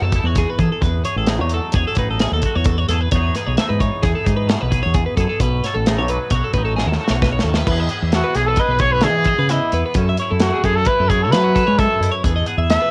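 Bright and intricate, this math rock and midwest emo excerpt moves at 132 BPM in 5/4 and E major, with a twangy, clean electric guitar giving accompaniment under warm arpeggios from a twelve-string electric guitar, while a growling, overdriven fingered bass and a punchy, up-front studio drum kit with a rolled-off top drive it along. A drum fill at 6.8 seconds leads into the next section, where a clear trumpet with light vibrato takes the melody from 8.2 seconds, sounding distant and roomy yet up front. The home cassette recording has little reverb and a tape grain on the guitars, drums and trumpet, over chords such as Emaj7 and B9sus4/F#.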